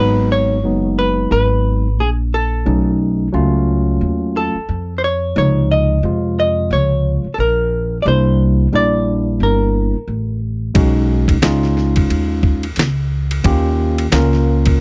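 Smoky and mellow, this jazz-hop cut from a longer hip hop piece rides a swung 16th feel, with a dark, picked hollow-body jazz guitar melody over a worn, slightly out-of-tune tine electric piano and a woody pizzicato upright bass on gut strings, all up front in a dry, close 1970s-style studio sound, until the guitar stops at 10.4 seconds and a gritty, compressed, sampler-style soul drum kit with a thumpy kick and fat snare enters at 10.8 seconds.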